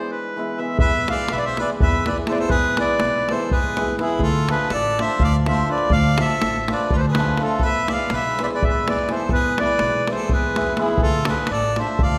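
Heard in a wet scoring-stage reverb, this fiery, restless stretch of Balkan wedding-band folk pushes forward in an uneven 7/8 with a straight feel. For the opening 0.8 seconds, a reedy, clear single-reed accordion carries the melody up front over the shimmering, ringing tones of a hammered dulcimer accompaniment. At 0.8 seconds the rest of the band arrives. A deep, close davul drives the pulse, and a woody, thumpy pizzicato upright bass with steel strings adds a dark low end. A distant, roomy harmonica with light vibrato plays a second line in a classical style. The harmony alternates between E and Dm, while the accordion's dry tuning and mid-forward presence keep the tune sharp against the warm dulcimer.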